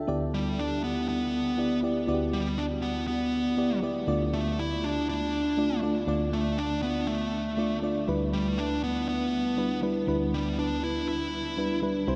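Nostalgic yet urgent, this pop excerpt moves at 120 BPM in a straight 4/4, drifting through Em7/D, Dm and back to Em7/D. An up-front FM electric piano carries the accompaniment from 0.0 seconds with a warbling, vintage, mellow tone, its fast attack and decaying notes layered with a noise texture. Over it, a smooth overdriven lead guitar sings the picked melody with delay, all bathed in a huge ambient reverb that leaves the mix dreamy and soaked.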